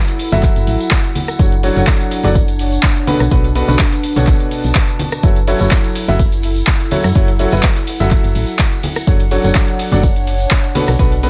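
A clear, woody upright piano riff carries this energetic, soulful piano house excerpt in F# minor at 125 BPM, its boxy tone touched by delay and sidechain pumping as it moves through F#m7, Dmaj7/F# and Bm7 chords with a light 16th-note swing. Underneath, a punchy, round FM bass with a dark, fast-attack, decaying tone pumps alongside a tape-warm, up-front electronic kick, while a layered house drum kit of handclaps, hi-hat, ride cymbal and rim click joins ringing acoustic tambourine and hard-handed congas. A very quiet, gritty breakbeat kit with a high-tuned snare sits low in the mix, and a warbling, nostalgic lo-fi pad with chorus and reverb hovers in the background from 0.0 seconds, all set in a digital ambience.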